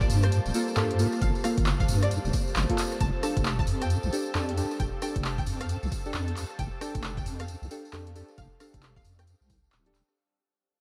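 Bouncy and soulful, this 134 BPM two-step UK garage cut from a longer piece in F major swings over Gm9 and F69 chords, with a deep, up-front wobble bass, a tape-warm electronic kick and a punchy analog drum machine of handclaps, hi-hat and rim click, a close, jingly tambourine, mellow chord stabs trailing a diffuse ambient delay, a twangy string-like resonator pluck melody with tape echo, a smooth analog pad and a cloudy granular pad both pumping in the background, vinyl crackle and light digital ambience, all fading out from 3.0 seconds.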